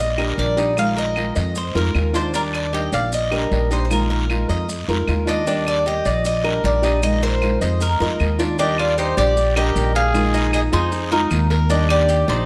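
A bright, metallic Cuban tres picks the melody while a second, warm tres plays arpeggios, both over a dark, growly pizzicato upright bass up front, opening this danceable Cuban son and guajira excerpt at 154 BPM in Eb major as Ebmaj7 and Bb7sus4 alternate. A fingerpicked flamenco guitar with old strings joins at 0.2 seconds, with woody claves, raspy guiro and grainy maracas in the background, all under light reverb. At 8.6 seconds a gritty, growling trumpet with light vibrato adds a second line.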